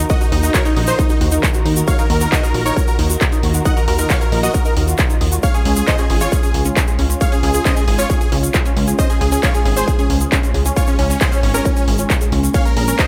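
The rhythm drives at 135 BPM in a straight 4/4, anchored by a distorted, up-front electronic kick drum, re-recorded in a large room, alongside a layered techno kit of crash cymbal, handclaps and warm hi-hats that pump with the sidechain, plus a grainy acoustic egg shaker. This is a short cut from an euphoric, driving uplifting trance track, moving through Ebmadd9, Db and Bbm7. A punchy, funky analog bass with a plucky, wave-folded sawtooth-and-square character sits low between Ab1 and Eb2, its notes decaying after a fast attack. Over it, a huge, detuned supersaw lead carries the melody between Db4 and Gb5, bright and compressed, with digital delay, shadowed by a very quiet, lush unison pluck on a second line in the same range. In the background, a tight sequenced synth spins arpeggios through chorus, phaser and delay, while a dark, woody studio string section holds bowed chords with vibrato, both breathing with sidechain pumping. 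A digital ambience wraps the mix, giving the whole passage a soaring, spacious lift.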